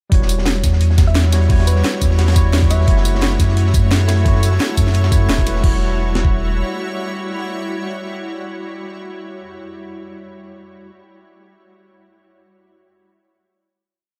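Lightly reverberant and melancholic, this short liquid drum and bass piece rolls at 174 BPM in E dorian. It opens on a drop where a deep, round sub bass and a gritty, compressed sampler-style breakbeat kit with a thumpy kick sit up front. Alongside them play a layered garage kit with a cracking snare, tambourine and crash, and a dark, small-room breakbeat loop in the background. Meanwhile a clean tine electric piano holds drop-2 chords with syncopated pushes through analog delay, moving from Em69 to F#m7, and a shimmering, ethereal pad with chorus and sidechain pumping sustains alongside it. A gentle FM thumb-piano-like pluck with phaser appears from 1.1 to 2.9 seconds. The drums and bass are gone by 6.6 seconds, leaving the pad and piano on a closing Em69.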